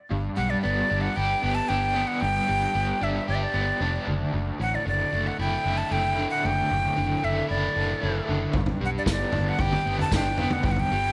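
A breathy, bright flute carries the melody from 0.4 seconds, its crisp chiff and vibrato sitting up front with a slapback echo, over a double-tracked, overdriven semi-hollow guitar riff pulsing with tremolo and a round, foam-muted fingered bass. This trippy, kaleidoscopic psychedelic rock excerpt moves at 114 BPM in a straight 4/4, shifting from G to Dadd9/F# and back to G under light reverb. A punchy vintage drum kit with a pumping small-room sound arrives at 8.5 seconds, joined briefly by a jingly tambourine tucked in the background at 9.1 seconds.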